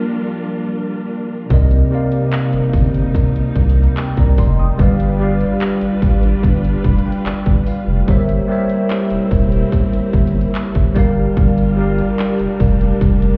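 A bright, chorused tine electric piano opens this sensual, longing contemporary R&B piece with a short solo break, set over the sidechain-pumped sustained chords of a lush, distant bowed string section. At 1.5 seconds an up-front trap kit with a hard-clipped kick, handclaps and warm hi-hats arrives alongside a deep, saturated sub bass, and the piano adds a fill around 6.4 seconds as the harmony moves from Gm7 through Cm7, G7 and C7b9. The mix sounds muffled, as if heard through a wall, with a faint stone-room ambience.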